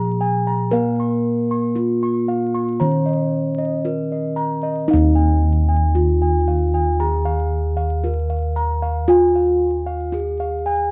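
Javanese gamelan in Eb slendro, a serene, shimmering passage cut from a longer piece, moving at a slow 57 BPM in a straight 4/4. A bronze metallophone struck with padded disc mallets carries the melody throughout, its tone mellow, close-miked, dry and full, ringing softly. A second metallophone, dark and smooth, supplies accompaniment only until 4.9 s, when the opening phrase gives way to a repeat of the same material. Bossed gongs weave arpeggios high above, round and beating with a mid-forward, up-front presence. Lower bossed gongs anchor the bass, the loudest part, their beating bronze tone dark and smooth. Light reverb, a dusky production and vinyl crackle give the whole recording an aged, intimate character.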